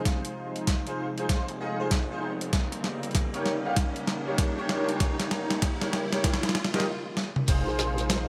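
This glitch hop excerpt has a gritty, funky mood and a swung 4/4 groove, built as a build-up over Fm7 and Eb7 chords. A brilliant concert grand piano plays up-front stabs with ensemble chorus, digital delay and sidechain pumping, while a smooth, detuned analog pad holds sustained chords in the background, also pumping under chorus. Low underneath, a saturated, sawtooth-edged driven synth bass with a resonant filter pluck sits back in the mix. Compressed, sampler-style boom bap drums and a thumpy electronic kick, re-recorded in a large room, stay up front, with drum fills running through most of the passage as a background riser climbs from 0.8 to 6.9 s. After a stop, a grainy shekere enters at 7.5 s and a nasal, formant-filtered wobble bass arrives at 7.7 s, all set in a plate reverb with a bright 1980s-style digital sheen.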